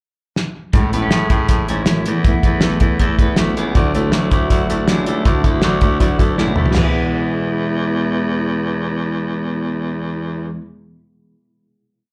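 A cloth-damped drum kit sits up front with a thuddy, gritty sound, fat snare and dark cymbals, driving a brisk indie backbeat at 160 BPM in this bright and nostalgic jangly indie pop piece in E mixolydian, with fills at 0.4 and 6.4 seconds. A twangy, compressed twelve-string electric guitar rolls through fingerpicked arpeggios with subtle chorus, analog delay and slapback echo, while a clear, punchy baritone saxophone carries driving eighth-note bass lines and a dark fingerpicked steel-string acoustic guitar, finger squeaks audible, strums open chord shapes in the background. From 3.7 seconds a reedy electric piano adds close-voiced eighth-note chords with fast tremolo, all heard as a live club gig through the venue's PA before the band settles on a final E chord.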